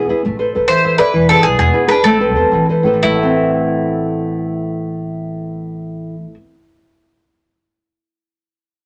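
A lilting 6/8 pulse, felt in dotted quarters at roughly 111-137 BPM, sways with a free, rubato feel in this short Italian folk serenade cut from a longer piece, set in A harmonic minor and tuned slightly low to A4 = 438 Hz. The mood is wistful yet passionate, opening on a fingerpicked nylon-string guitar in a classical style, heard up front with a warm tone alongside a woody, growly pizzicato upright bass on steel strings. At 0.7 seconds the bright, double-strung bowl-back mandolin takes the melody up front, while a second, round-toned mandolin sits in the background on a lower supporting line, and the guitar slips in a brief fill just as they arrive. The harmony moves from Amadd9 to E and back to Amadd9, and the music slows down between 1.1 and 3.0 seconds, lending the phrase a tender, lingering quality. A light reverb gives the acoustic ensemble a gentle sense of space before the excerpt ends at about 6.5 seconds.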